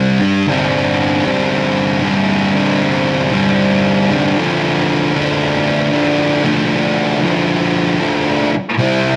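A thick fuzz guitar opens the recording alone and carries it for its full 9.2 seconds, a short rock passage cut from a longer piece. The electric guitar is picked and distorted, its double-tracked sound sitting up front with a warm, saturated weight that spans from G2 to G4. In straight 4/4, the harmony moves from Gsus4 at 0.5 seconds to Dm at 4.4 seconds, giving the moment a bittersweet yet anthemic character. A moderate stone-room reverb surrounds the guitar, and the rough rehearsal-room capture adds a gritty tube coloring that makes the performance feel raw and immediate.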